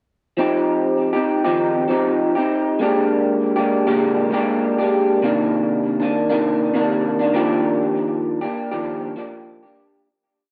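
Hazy, laid-back indie pop at 99 BPM in Eb major with a gentle 16th-note swing, carried by a lone, slightly broken-up electric guitar through a small old amp that strums barre chord shapes up front through Eb69, Bb6, Cm9 and Ebmaj9, its lo-fi tone coloured by analog chorus, tape echo and warbly pitch drift, all set in a wet spring reverb on worn cassette tape before fading out from 7.6 to 10.1 seconds.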